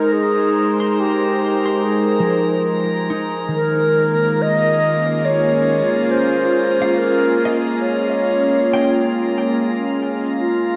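Ambient, melancholic and spacious, this fragment of a longer piece sets an airy, up-front wooden-headed alto flute melody with analog delay over a bright, detuned wavetable pad that morphs through chorus and built-in reverb, alongside a glassy glass-harmonics texture of drifting overtones, while a clean, compressed semi-hollow electric guitar enters at 0.8 seconds and fades in with delayed arpeggios, and a very quiet organ-like drone joins at 4.3 seconds, the chords moving from Abadd9 to Bbm7 within a wet plate reverb that leaves the mix echo-heavy.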